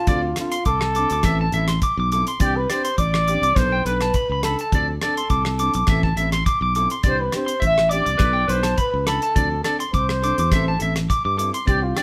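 A breathy, dark trumpet carries a scooped, vibrato-laced, jazz-style melody up front in this sunny, carefree highlife guitar band piece at 104 BPM in C major, over twangy, slightly broken-up electric guitar arpeggios, a growly fingered electric bass, a dry 70s drum kit with a tight kick, hi-hat and rim click, and a woody, fingerpicked nylon-string guitar in the background, as the band cycles through Dm7, Am, Cadd9 and a rootless Gadd9/B with the feel of a live room and light reverb.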